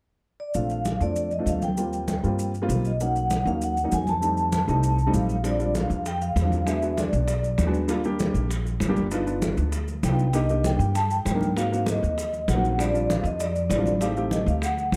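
Sophisticated and danceable, this excerpt of brisk Afro-Cuban jazz at 196 BPM in Bb major sets a ringing, metallic vibraphone melody with fast motor vibrato over a woody, slightly detuned upright piano and a thumpy, up-front pizzicato upright bass on gut strings, while thick-skinned congas in a distant large room and grainy, close, dry maracas drive the groove, tight high-tuned bongos with hard hands join at 5.4 seconds, and the vibraphone drops out briefly before returning at 10.0 seconds, all captured with close, detailed microphones and light reverb over rich chords such as Bbmaj7, E9 and G7b13.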